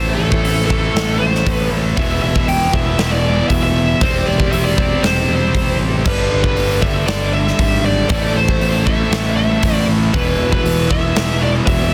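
A straight 4/4 hard rock groove at 118 BPM drives this heavy, aggressive passage in A minor, cut from a longer piece, with a huge arena drum kit up front from 0.3 s, its punchy kick softly clipped, its snare medium-tuned, bright cymbals ringing in a pumping hall. A dark, high-gain lead guitar carries the melody through distortion and analog delay over two bright, overdriven rhythm guitars riffing in the background, a round, punchy overdriven picked bass, and a very quiet, gritty tonewheel organ holding sustained chords through a slow rotary speaker. The chords move from Am to E5, C/E and G5 before returning, all under studio reverb and a dense, heavily limited modern master.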